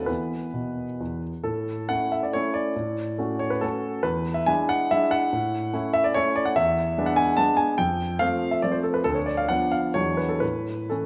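Bathed in the wet reverb of a recital hall, an intimate, up-front grand piano with audible action noise and long sustain plays solo throughout this 11.1-second cut from a proud, graceful romantic triple-time dance in A major, moving with rubato between 114 and 156 BPM in dotted 3/4 rhythms across a span from D2 to A5, its harmony passing through Dmaj7/A, E7 and a colourful F before Bdim/D and E13 lead back to A at 10.4 seconds.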